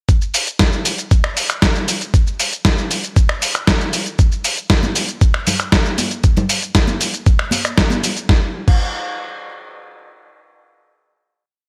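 A gritty, thumpy electronic kick drives this short, groovy and sensual nu-disco piece, sitting up front with overdrive and a four-on-the-floor pulse. Alongside it, a dusty, sampler-style soul drum kit supplies a disco backbeat built from a medium-tuned snare, finger snaps, open and closed hi-hat, shaker and crash cymbal, its overdrive and gated reverb adding compressed punch. At 4.8 seconds, high-tuned congas with a thin skin and hard hands join as disco percussion, their saturated, bright attack sitting lower in the mix until they drop out at 8.0 seconds. The whole track is a single drop that gives way at 8.3 seconds to a final hit. The sound carries light reverb and the sheen of 1980s-style digital production.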